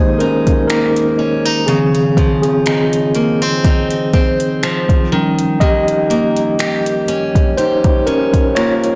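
A mellow, clean tine electric piano leads this longing, sensual contemporary R&B excerpt at 61 BPM with a slight 16th-note swing, moving through Fm11, Dbmaj9 and Eb7 over a boxy parlour steel-string acoustic guitar picking delayed arpeggios with audible finger squeak, while an electronic drum kit of finger snaps, metallic hi-hats, a soft kick and a soft-clipped snare enters at 0.2 seconds carrying 12-bit sampler grit, the whole mix sitting in a lightly reverberant, blown-out, overdriven sound.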